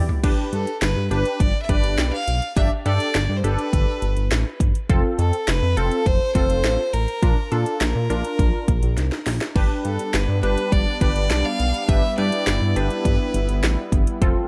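A clear, lightly vibrato fiddle with tape echo carries a nostalgic, wistful synth-pop line over a punchy, chorused polysynth comp, a glossy, mellow synth bass and a layered electronic house kit with cracking snare and metallic hats, while a warbling vintage pad returns at 9.6 s just after a drum fill, all in a dark, gently reverberant mix from a longer piece.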